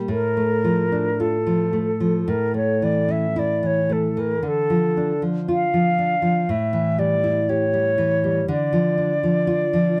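The nylon-string guitar sounds first at 0.0 s, fingerpicked and full-bodied, with a deep classical tone. The silver concert flute joins at 0.1 s with an airy, warm melody, played with vibrato and a soft attack, both instruments sitting up front in a close, detailed recording with light reverb. This is a solemn, elegiac romantic duo in D minor, tuned to A4 = 438 Hz, moving at a slow 54-62 BPM in 4/4 with a rubato feel. The harmony turns between D minor and A, passing through Dm/A, A, Dm and A7 before settling on Dm at 8.5 seconds. Cut from a longer piece, this passage carries the grave, mournful mood of a lament.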